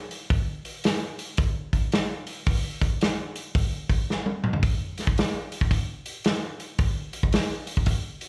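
Gritty and raunchy, this short rock cut from a longer piece runs at 111 BPM in 4/4 with a swung eighth-note feel. A vintage acoustic drum kit carries it alone from 0.1 to 8.3 seconds, its hi-hat, kick, snare and toms sitting up front with a mid-forward, rolled-off top and a small-room character. The snare is medium-tuned and the kick tight. A drum fill between 4.1 and 4.6 seconds leads into a new section that carries on to the close. Captured live at a gig through the venue's PA, the sound wears a light club reverb.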